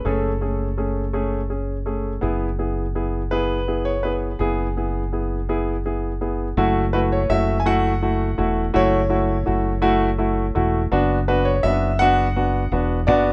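A clear, smooth concert grand carries the melody from the opening moment, its vintage tone softened by tape echo, while a second, polished and present grand piano plays the accompaniment in a lower register, and a round, punchy fingered electric bass sits up front underneath. This melancholic, aching six-eight pop ballad in F# minor moves at a slow 55 BPM, drifting through Amaj7/F# and E/F# before shifting to F#m7 at 6.6 seconds and D6 at 10.9 seconds. The rough home-demo mix has moderate studio ambience, and the passage is cut from a longer piece.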